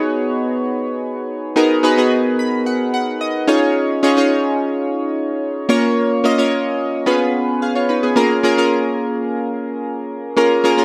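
Pop at 109 BPM with a nostalgic, urgent air, this short cut features solo chorused retro synth keys, glossy and bright, blending pulse and sawtooth tones with pulse-width modulation, a filter sweep and fast-attack, decaying notes, set up front in a lush hall reverb, with a brief keys fill at 2.1 s over chords moving from G#m7 through C#add9 and A#m to C#7 and Bbm7.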